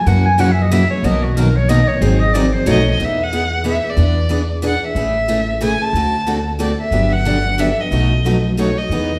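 This short cut from a longer piece sits in a reverberant church or concert hall, the room's bloom trailing each note for about a second and a half. It is acoustic string swing in the jazz manouche style, a charming, swinging tune in three, with a lilting swung eighth feel. A bright, punchy clarinet opens with a forceful jazz solo, its vibrato sounding distant and roomy, until 2.9 seconds. A bowed violin takes the melody from 2.7 seconds, one player, up front and expressive, with vibrato, portamento and a smooth top. Beneath it, a pizzicato upright bass on gut strings gives a woody, dark, thumpy pulse, while a boxy parlour guitar picks accompaniment up front and a full-bodied dreadnought with fresh strings sits in the background, dropping out before returning at 6.9 seconds. The harmony moves through colourful seventh chords, from F#7 and Bmaj7 into Emaj7, Amaj7 and Gmaj7.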